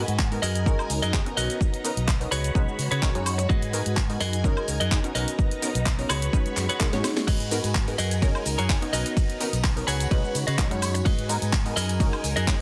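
Filtered disco house at 127 BPM in F# major, this joyful, funky clip from a longer piece rides a light 16th-note swing over a looping F#69, Bmaj7, C#7sus4, G#m7 progression. A punchy, tape-warm electronic kick sits up front alongside a layered house kit with a cracking snare, handclaps, hi-hat, ride, crash, shaker and woodblock, re-recorded in a large room, with pumping on the hats, percussion and cymbals. A dark, round fingered bass with tube saturation anchors the low end, while a nasal, detuned polysynth comp with a plucky filter, chorus and phaser pumps beside a clean, picked electric guitar riff. A swirling, vintage string machine holds bright sustained chords through ensemble chorus, phaser and 12-bit sampler grit. At 6.5 seconds a faint electronic swell leads into a drum fill, a very quiet tambourine enters at 7.3 seconds, and the guitar plays a fill from 9.6 seconds, all in a dry mix with little reverb.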